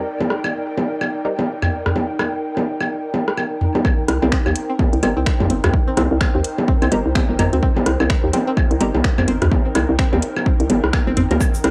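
An overdriven, punchy kick arrives up front at 3.8 s to open the drop in this hypnotic, clinical minimal techno excerpt at 127 BPM in C minor, joined by a hollow, knocking FM bass, a twangy, string-like resonator pluck riff in the background, and finger snaps with metallic hi-hats, while a crisp, very quiet wavetable chord stab (until 8.9 s), an airy, breathy pad with sidechain pumping, and tape-warm bongos, rim clicks, toms and woodblock carry the swung groove over Cm7, with a grainy tube shaker at 11.4 s and light reverb on a cassette home recording.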